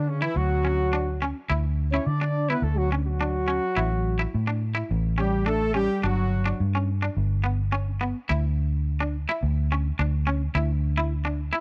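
A dry, close studio sound in a 1970s style frames this joyful highlife guitar band fragment, cut from a longer piece and moving in a straight 4/4. A tight, close-miked horn section carries the jazz-style melody in octave doubling with a light vibrato, sitting up front until it drops out at 6.6 seconds. Beneath it, a bright, clean, scooped electric guitar plays picked, twangy accompaniment coated in lush chorus, continuing to the end at 11.6 seconds. A dark, foam-muted fingered electric bass gives a round, punchy low end, amped and prominent in the mix. The harmony moves from Dadd9 through A and G before settling on Dsus2 at 8.3 seconds, where the guitar and bass carry a new section on their own.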